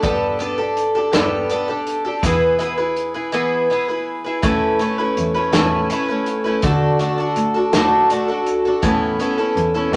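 A moderate club reverb gives this short slice of a longer piece a lively sense of space, with a picked twelve-string acoustic guitar sitting up front. This is warm, hopeful folk rock with a heartland rock feel in a straight 6/8. The parlour-sized twelve-string carries the accompaniment throughout, its octave-doubled strings shimmering and bright over a slightly boxy body, with the occasional finger squeak audible. Beneath it, a single muted cello plays the bass line con sordino, bowed with vibrato, its tone dark and veiled with a smooth top. An acoustic drum kit played with bundle sticks sounds distant and roomy, pairing a tight kick and medium-tuned snare with hi-hat. The harmony moves from Gadd9 to E, then at 4.4 seconds a second section cycles through Aadd9 and D before returning to Aadd9 at 8.8 seconds.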